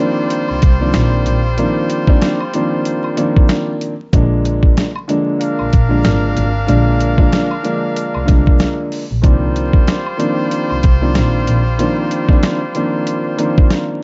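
Gritty and reflective, this boom-bap hip-hop excerpt moves at 94 BPM in C minor with a swung 16th feel, as a dark, intimate concert grand piano with audible action noise carries the Cm11 and Bb7 chords up front while a loose, brilliant trumpet section with jazz vibrato punctuates with slapback-echoed stabs. A compressed, pitched-down sampler-style drum kit with a thumpy kick and medium-tuned snare sits forward from 0.3 seconds, joined by a single bowed double bass played sul tasto with a soft, floating tone and an egg shaker and woodblock tucked into the background. The mix is dark and warm, with vinyl crackle, light reverb and a top end rolled off above 7.7 kHz.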